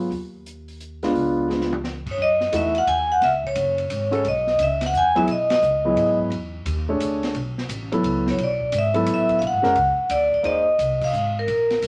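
Hypnotic and searching, this brief excerpt of modal jazz in a swung 3/4 opens with intimate grand piano comping up front, its action noise audible and its chords sustaining long, over woody, thumpy pizzicato upright bass on gut strings and a smooth drum kit with dark cymbals and a punchy kick. A drum fill at 1.5 seconds sets up the vibraphone melody at 2.1 seconds, its medium hard mallets giving a bright, ringing, airy tone with slow motor vibrato, and it rests briefly before returning at 8.3 seconds. Band accents land at 5.5 and 11.0 seconds as suspended and altered dominant harmonies drift under moderate studio reverb.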